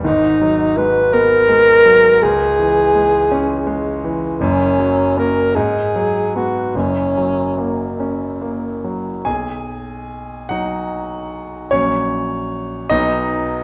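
A romantic classical duo for alto saxophone and grand piano, this lyrical, serene passage cut from a longer piece moves in a slow, rubato 6/8 at roughly 48-56 beats per minute in B major, tuned to A4 = 442 Hz. The dark alto saxophone carries the melody up front in a classical style, with light vibrato, a soft attack and a smooth top, and it sings until 8.0 seconds. The concert grand piano accompanies throughout, its tone clear, polished and intimate, with deep bass, long sustain and audible action noise that keep it present beside the horn. The harmony opens on G#m7 and drifts through C#m and F# before the music settles into B at 9.3 seconds, where the piano continues alone through an F#/A# back to B until 13.6 seconds. A reverberant recital hall surrounds the pair, giving the sound a spacious, resonant bloom.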